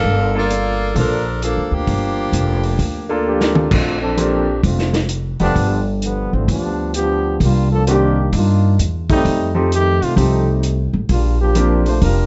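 Big band swing in G minor, this short excerpt from a longer piece moves at 130 BPM with a swung 4/4 feel and a dramatic, sultry mood. A tight saxophone section opens with the melody, light vibrato shimmering at the front of the mix, while a woody, thumpy pizzicato upright bass anchors the low end throughout. A concert grand piano supplies clear accompaniment with deep bass and long sustain, and a vintage drum kit, muffled and lo-fi with dark cymbals and a punchy kick, keeps the swing going. As a drum fill kicks in at 3.3 seconds, a close-miked trombone section takes over and carries a solo from 3.7 seconds to the end. The harmony travels from Gm9 through Bbmaj9, G7, Cm9 and F9 before settling on Bb6, all wrapped in light reverb with a mellow, rolled-off top.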